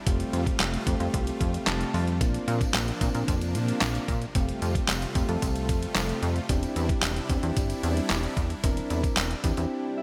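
Bright 1980s-style digital production with light reverb frames this euphoric, carefree dance-pop excerpt, where huge, lush supersaw chords pump with sidechain alongside soft, round electric-piano-like synth keys with chorus that add fills at 1.4 and 9.7 seconds, a punchy, funky plucky analog bass, a detuned 8-bit drum machine of thumpy kick, snare, hi-hat and handclaps, and a very quiet, jingly tambourine that enters at 2.2 seconds before a brief break closes the passage.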